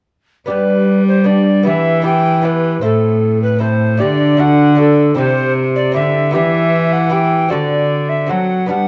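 Classical Renaissance-style consort dance in triple metre, festive and courtly in mood, heard as a short excerpt cut from a longer piece. An alto recorder carries the melody with a hollow, airy wooden tone, its tongued notes and gentle chiff sitting up front. A fingerpicked lute supplies the accompaniment, bright and delicate with the shimmer of double strings. Beneath them a single cello plays the bass line, bowed in period style with a rich gut-string tone and a reedy edge, also placed up front. All three play together from 0.5 to 8.9 seconds over a harmony that moves from G through E minor and A minor to a suspended D resolving, then on to C, E minor and a closing D7, all set in light reverb with a dark, warm production.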